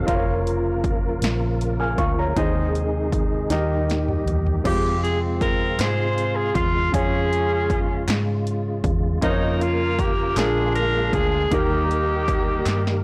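A bright, tight saxophone section carries the up-front melody from 4.7 seconds in this soulful, uplifting slow gospel excerpt at 52 BPM in 6/8, over a natural-sounding baby grand piano, a clear tonewheel organ with key click and slow rotary speaker, a dark, round muted electric bass with transformer saturation, and a punchy, layered electronic drum kit that plays a fill before the horns arrive, while crisp handclaps join in the background at 5.8 seconds, all in a light reverb with a blown-out, overdriven sound.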